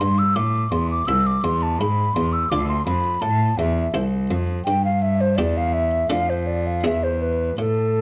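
A mellow, airy wooden baroque flute carries the melody with vibrato and tongued notes up front, over a rich, reedy bowed cello bass and a muted, lute-like buff-stop harpsichord in this introspective, solemn A-minor baroque-style sonata fragment at 84 BPM, set in a moderate large-studio reverb with a dark production and moving from Am through Dm9b5 and Em/G to close on E.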